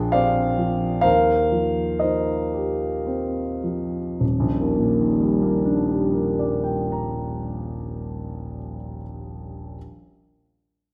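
Impressionist classical solo piano in a luminous, dreamy 3/4 with rubato, where a warm concert grand with deep bass, open tone and long sustain sits up front in a wet recital hall reverb, easing into a slowdown over the first 4.2 seconds as rich extended chords settle onto a major seventh in this brief excerpt from a longer piece.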